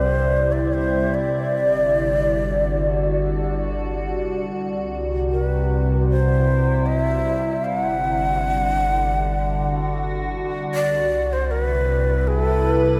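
A straight 4/4 pulse at 78 BPM underlies this weightless, serene ambient excerpt in C lydian, where a breathy, bamboo-toned shakuhachi with expressive vibrato and a breathy chiff carries the melody through a diffuse delay, an evolving, morphing wavetable pad sustains chords moving between C, G5 and Cmaj7 with chorus, phaser and a filter sweep, and a round, deep analog bass anchors the low end, the whole excerpt set inside a huge, wet reverb with an 8.0-second tail.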